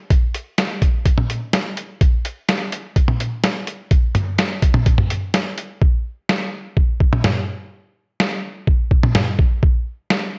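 Bright yet wistful, this short pop fragment moves at 126 BPM in a straight 4/4 feel. A lo-fi sampler-style drum kit carries the whole piece from 0.1 to 10.2 seconds, using hi-hat, kick drum, snare drum and toms. The kit sounds compressed, pitched down and muffled, with a thumpy kick and a medium-tuned snare sitting up front in the mix. The recording has a light reverb and the worn, warbling character of old cassette tape, complete with a drifting pitch that gives it a nostalgic haze. The fragment opens with one section and shifts into a second at 5.8 seconds, running on as though cut from a longer piece.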